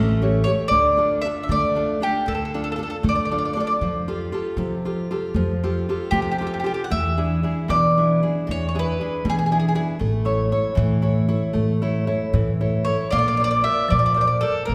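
Bathed in the wet reverb of a church or concert hall, this wistful, romantic Italian folk serenade fragment in D minor drifts rubato at 77 BPM in 6/8. A warm, woody mandolin sits up front carrying the melody in phrases from 0.4 s, while a bright second mandolin murmurs in the background and returns at 13.1 s. Beneath them, a fresh-stringed nylon-string guitar is fingerpicked with audible finger squeaks as accompaniment, and a thumpy gut-string upright bass is plucked pizzicato underneath as the chords move from A7 through Dm, Fadd9 and E7 to A and Bbadd9.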